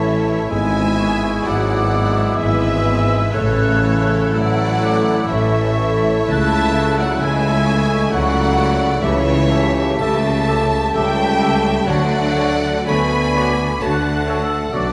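A serene, slow romantic orchestral movement in 3/4 opens with the full ensemble sounding together, the bright, focused symphonic violin section carrying the lush, vibrato-laden melody with rubato phrasing. Around it, a smooth studio violin section, a pure, mellow flute ensemble, a clear oboe and a soft-attacked clarinet weave second lines, the woodwinds sitting in the background. A very quiet, rich viola section and a distant, roomy bassoon fill in the accompaniment, while a French horn section holds sustained chords and a ringing concert harp plays very quietly in arpeggios. The bass rests on an intense cello section, a focused double bass section and a warm, distant tuba. Harmony moves gently from A through A/C# and A7/C# to a closing Dmaj7 around 11.9 seconds, and the whole 14.9-second passage is cut from a longer piece. A wet scoring stage reverb and a dark, warm production give the orchestra a lush, enveloping glow.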